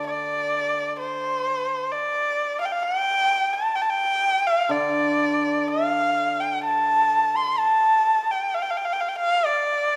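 The rhythm is free and rubato, loosely anchored to a 2/4 metre at 64 BPM, so the phrases breathe rather than march. This graceful, tender passage of Chinese traditional chamber music is set in the D yu mode, tuned slightly low to A4 = 439 Hz, and is cut from a longer piece. A solo erhu carries the melody from 0.1 seconds onward, ranging from C5 to C6. Its bowed tone is close and up front, expressive with vibrato and sliding portamento, and it has a warm voice. Beneath it, a hammered dulcimer supplies sparse accompaniment around D3 in two brief spells, opening the piece and returning at 4.7 seconds, with an acoustic, shimmering, ringing sound that sits far back in the mix. A light reverb gives the pair a gentle sense of space.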